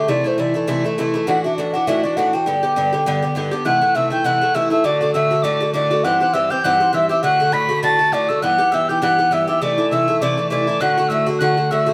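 Bright and cheerful, this lightly swung Celtic reel at 201 BPM opens with a pure, woody baroque flute carrying the melody, with vibrato and a soft attack, over an up-front Irish bouzouki picking metallic double strings, before an airy, close-miked tin whistle with a crisp, chiffy attack joins at 3.7 seconds to add a high second line, all set in moderate studio reverb that places the group a little back in the room in this short excerpt from a longer piece.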